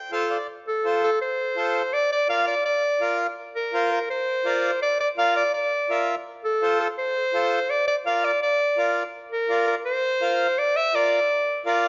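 Sunny and joyful, this brief Latin cut from a longer piece moves at a brisk 166 BPM in straight 4/4, tuned slightly low to A4 = 437 Hz. From the first moment, a close-miked, reedy accordion in dry tuning plays a short fill before settling into full accompaniment over F and Bb. Alongside it from the start, an up-front classical-style clarinet with a bright, smooth top carries the solo melody through an analog delay, set in a moderate large-studio reverb.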